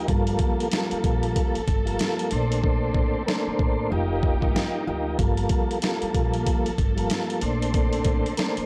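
A dry, gritty hardware sound with transformer saturation frames this moody, dark boom-bap hip-hop excerpt in G minor at 94 BPM with a 16th-note swing, where a compressed, pitched-down sampler-style kit with a thumpy kick and medium-tuned snare sits up front (its hi-hats muted from 2.6 to 5.2 seconds), a woody pizzicato upright bass anchors the low end, a clean tonewheel organ with chorus vibrato and a stopped rotary speaker carries the accompaniment through a cassette-tape haze, and a lush bowed string section with vibrato and portamento holds sustained chords beneath, moving through Gm9, Bbmaj9 and F9sus4.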